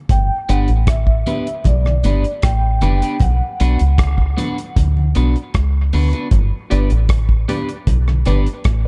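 Dub reggae at 77 BPM in a straight 4/4, deep and meditative, this short excerpt moves from G to B minor and back over a dark production with small room ambience. A foam-muted, round fingered bass sits up front beside a cloth-damped, thuddy drum kit of tight kick, hi-hat and rim click, while distant, low-tuned congas stay in the background. A mellow vibraphone played with soft mallets carries the melody with fast motor vibrato and dub echo until 4.7 seconds, a slightly broken-up picked guitar with subtle chorus and dub echo provides accompaniment, and from 6.7 seconds a filtered, detuned sawtooth chord stab with phaser and dub echo plucks in.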